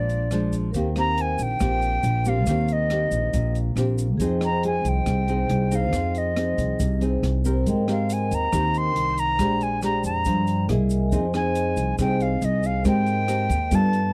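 Relaxed and breezy, this bossa nova excerpt in Eb major at 139 BPM sets a reedy, airy silver flute melody up front over fingerpicked nylon-string guitar with old strings, a woody pizzicato upright bass, a small-room jazz kit with boomy kick, hi-hat and rim click, a grainy tube shaker in the background, and a ringing vibraphone with slow motor vibrato entering at 0.7 seconds, all captured in a dry, close 1970s-style studio sound as the chords move from Eb6 through Fm7 and Abmaj9 to a C7alt.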